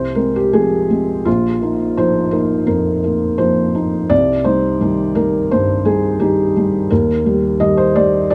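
Dark, warm production with light reverb frames a felt-muted upright piano, soft and up front with a thick, mellow felt tone, playing alone across this hopeful neoclassical minimalist excerpt at a rubato 85 BPM in 4/4, ranging from Bb1 to Eb5 as it moves through Fm, Bbsus4, Cm and Eb over 8.3 seconds.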